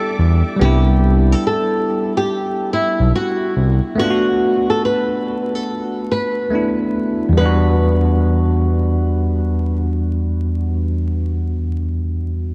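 A bright, fingerpicked flamenco guitar melody bathed in lush chorus and analog delay opens alongside a bell-like tine electric piano tinted by cassette tape and a brief, clear bowed string section that drops out at 0.6 seconds, while a smooth sawtooth synth bass with ring modulation sits up front until 3.8 seconds, all in this reflective, nostalgic lo-fi hip hop excerpt at 71 BPM in E minor, swung on the sixteenths and moving through Em7, Cmaj9 and Bm7 inside a dreamy cathedral reverb with vinyl crackle.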